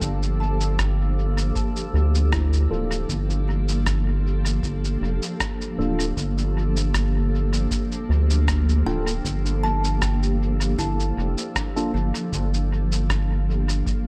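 Ambient dub at 78 BPM in G dorian with a light 16th-note swing, hazy and spacious, resting on a single Gm9 chord: a round, up-front analog bass anchors a blurred, evolving granular cloud pad, woody kalimba arpeggios drift in the background through tape echo, a muffled, pitched-down cabasa and rim click ripple with dub echo over a deep electronic kick, and a clean tine electric piano adds phased, echoing stabs from 2.7 to 11.9 seconds, all in light reverb in this fragment cut from a longer piece.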